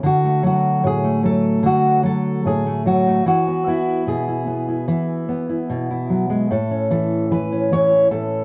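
A fingerpicked steel-string dreadnought acoustic guitar plays alone in a wistful, intimate folk passage at 74 BPM in a straight 4/4. Its warm, up-front voice spans A2 to C#5 as the chords move from D to E at 3.3 seconds and settle on A at 6.5 seconds. The short cut from a longer piece sits in a modest booth ambience with dulled top end and a faint mains hum beneath.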